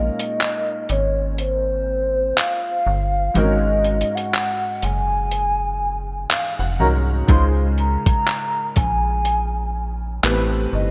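A dreamy, smooth contemporary R&B excerpt at a slow 61 BPM in 4/4 with a swung sixteenth feel, in Db major and tuned to A4 = 438 Hz. It opens on a break, with a hollow, woody, clarinet-like synth lead carrying the melody up front, its warbling vibrato, detuned layers and sub octave colored by chorus and digital delay. Beneath it, a clear concert grand piano with deep lows and short sustain plays the accompaniment through an ensemble chorus. A metallic FM bass with a fast, decaying attack sits low and up front. A gritty, sampler-style soul drum kit of thumpy kick, hi-hat and handclaps arrives at 0.2 seconds, tape-toned and treated with gated reverb. The piano takes a fill from 5.8 to 7.3 seconds. Across the excerpt the harmony moves from Bbm9 through Ab7sus4 to Dbmaj7 and finally Am7, all framed by a bright 1980s-style digital production and a light reverb.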